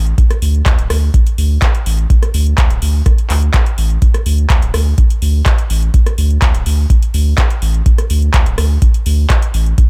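Trippy and hypnotic, this short acid house cut at 125 BPM in a straight 4/4 rides a thick, saturated sine sub bass that sits up front between D1 and D2 with sidechain pumping, a deep overdriven analog kick, and a booming drum machine adding metallic hi-hats, handclaps and rim clicks, both drum parts re-recorded in a small room and kept fairly dry throughout the roughly 9.9 seconds.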